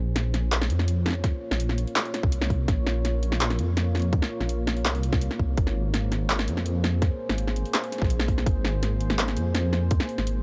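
Half-time drum and bass with a cinematic, spacious mood, cut from a longer piece, where a moody, detuned sawtooth pad with chorus, built-in reverb and sidechain pumping holds sustained chords over a deep, rumbling saw bass, while an overdriven kit of cracking snare, bright hats and handclaps enters at 0.2 s and a tight, overdriven electronic kick joins up front at 1.2 s, the harmony moving from Bbm to Abadd9 at 5.6 s in a dry, gritty cassette-tape sound.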